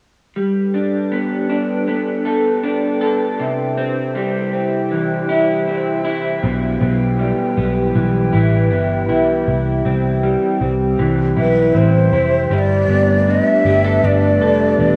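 A straight, unhurried 4/4 pulse carries this floating, dreamy dream pop excerpt. From 0.4 seconds, a warbling, lo-fi pad of slow-attack sustained chords sits beside a dark, slightly broken-up electric guitar playing fingered arpeggios up front. The guitar is washed in analog chorus, shimmer reverb and digital delay, while the pad carries chorus, its own built-in reverb and shimmer. A round, foam-muted electric bass with an amped, vintage tone joins at 6.4 seconds, grounding the harmony as it moves from Em/B through C and back to Gadd9. At 11.4 seconds a breathy bamboo shakuhachi enters up front with a mellow, tongued melody touched by vibrato and trailed by shimmer and delay, shortly before the music turns into a new section. The recording sits in a long plate reverb and studio ambience, colored by worn cassette tape and its warbly pitch drift.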